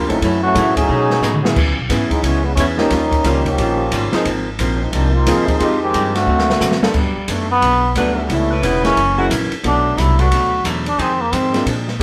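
Swinging and energetic, this big band swing excerpt moves at 178 BPM in 4/4 with swung eighth notes, settling into G major from 6.9 s. It opens on a clear, up-front trombone section with light vibrato and a soft attack, carrying the line over a rhythm section of woody pizzicato upright bass, an open-sounding concert grand piano with deep bass and long sustain, and a clean, picked hollow-body archtop guitar tucked into the background. The acoustic drum kit sounds dark and smooth, with dark cymbals, a medium-tuned snare and a punchy kick, adding fills around 1.2 s and again just before the section change. At 7.0 s a trombone with a metal mute takes over the melody, brilliant, buzzy and breathy, close-miked and sitting at the front of the band. From 8.0 s a mellow saxophone section, smooth on top, lays sustained chords underneath. The whole band plays live in one room with moderate studio reverb, moving through rich chords such as Gmaj7, C#m7b5 and F#7.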